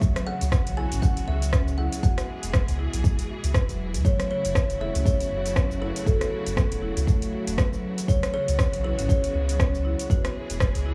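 Spiritual and driving, this afro house excerpt rides on swung sixteenths in 4/4, cycling through C#7sus4, E and F#m7. A deep, layered electronic kick sits up front and leads the mix, while an afro-pop kit adds metallic hi-hats, rim clicks and shaker with a tape-tinged, produced edge. Beneath them, a round sine sub bass with a fast attack carries tube saturation and sidechain pumping, and a clear, distant string section shares that pumping while holding bowed, vibrato-laden chords. A woody marimba played with soft mallets spins mellow arpeggios through analog delay and the same pumping. On top, a bright, ringing kalimba with a hollow-box tone sings the plucked melody through its own analog delay. The sound is dry and gritty, set in a small room ambience.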